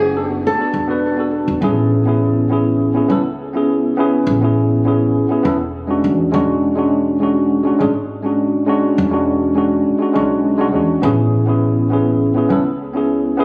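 A straight 4/4 pulse at 102 BPM sets an easy, unhurried pace for this smooth sunset chillout piece in A major, cut from a longer track. A dark, boxy flamenco guitar, thumb-plucked and touched with delay, opens with a brief melodic phrase that ends at 1.3 seconds. A barky, clean tine electric piano, heard through a combo amp and sitting up front with its own delay, carries the accompaniment throughout. Beneath it, a pizzicato upright bass on steel strings gives a woody, thumpy low end. The harmony moves from E7sus4 to Amaj9 at 1.6 seconds, then through E13 at 6.0 seconds and back to Amaj9. A lush hall reverb and a phone recording in a studio room give the whole a warm, roomy feel.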